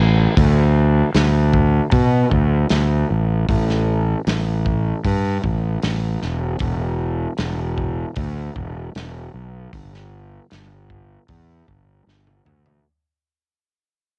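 Cut from a longer piece, this dry home cassette recording of hazy, blissful shoegaze and dream pop rock moves at 77 BPM in a straight 4/4, tuned to A4 = 441 Hz, with a growly, overdriven fuzz bass sitting up front from 0.0 seconds and a loose, small-room acoustic drum kit with a tight kick, medium-tuned snare, hi-hat, toms and a rolled-off, tape-softened top joining at 0.4 seconds, the whole passage fading out from 0.3 seconds to the end while a drum fill arrives at 12.1 seconds.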